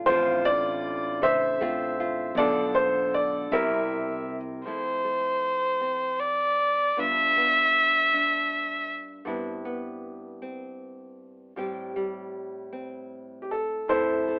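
A bowed violin, nasal and smooth with even vibrato, takes the spotlight in this intimate, reflective acoustic folk-pop ballad, entering up front at 4.7 seconds. The piece moves in a slow 6/8 at 52 beats per minute with a straight feel, its chords passing from Dm7/A through Bm7b5 and C7 into Fmaj7, G7, Cmaj7/G and Am7. Fingerpicked nylon-string guitar in a classical style underpins the whole passage, while a fretless electric bass, amped and direct, holds the low end only through the opening. A clear upright piano, woody and close with audible action noise, carries the melody at the start and returns near the end. The sound has light reverb and a telephone-like tone, and the clip is cut from a longer piece.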